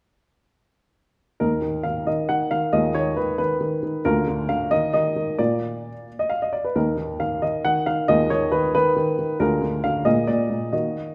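In a straight 6/8 lilt, this serious, restless fragment of a classical-period piano sonatina features a solo baby grand, intimate and up front with audible action noise and short sustain, playing from 1.4 to 11.1 seconds over chords such as Fm7b5/Eb and Bb7/D, set in a wet recital-hall reverb.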